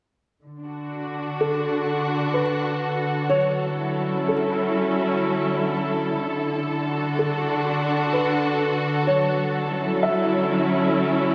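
A veiled, con sordino string section holds lush bowed chords with vibrato from 0.4 s, its dark tone rounded further by a low-pass filter, in this serene, weightless ambient excerpt in D major at a slow 62 BPM in 3/4. A calm, detuned organ-like drone on D enters in the background at 1.3 s, thickened by ensemble chorus and its own reverb. A felt-muted upright piano with a soft, intimate, thick-felt tone adds a melody through tape echo from 1.4 s, all over chords that alternate between D and F#m7, set in a drenched cathedral reverb with a cassette-tape character.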